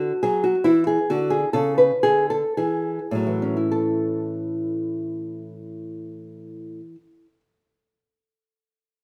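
A lone nylon-string guitar opens this short cut from a longer classical piece, a baroque-style dance in 3/4 that feels flowing and dance-like. The tempo drifts between 52 and 72 BPM with a rubato feel, easing into a gradual slowdown across the first phrase, which runs until 3.7 seconds. The harmony moves from D through a colorful Dmaj9#11 and onto E before settling on A at 3.7 seconds, where a second phrase begins; the piece is in A major, tuned to A4 = 441 Hz. The guitar sits up front with a small, warm, thumb-plucked acoustic tone spanning A2 to B4, and finger squeaks are audible. A moderate studio reverb surrounds it in a rough home-demo mix, and the passage ends at 7.4 seconds.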